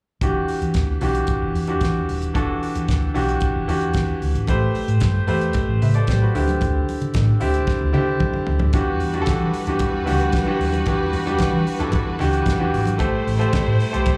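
Disco groove in E minor at 113 BPM, driving and danceable, heard as a live gig through a club PA, where a clear, up-front grand piano with slapback echo and a round, punchy hollow-body electric bass with tube saturation ride over a damped 70s kit with a fat snare and tight kick, bright vintage congas join in the background at 4.5 seconds, a drum fill from 7.7 seconds leads into a lush, distant bowed string line at 8.7 seconds, and chords move from Em9 through Am9 and D9sus4 in this snippet from a longer piece.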